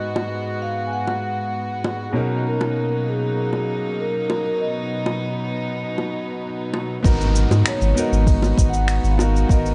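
This sunset chillout excerpt has a wistful, warm mood and a straight feel. A mellow vibraphone played with soft mallets carries the melody with a ringing, metallic tone and a tape echo. It sits over an intimate concert grand piano whose action noise can be heard, and a rich chamber string section holding earthy, bowed chords with light vibrato. A very quiet, glassy texture of drifting overtones hovers until 7.1 seconds, while round, low-tuned bongos keep time from the opening moments. At 7.0 seconds the music opens up as a deep, up-front sub bass, an overdriven electronic kick and a distant, roomy brush kit with cabasa, finger snaps and hi-hat arrive together, with a downlifter sweeping in the background. The dark production keeps the top end soft, and a light studio reverb surrounds the whole.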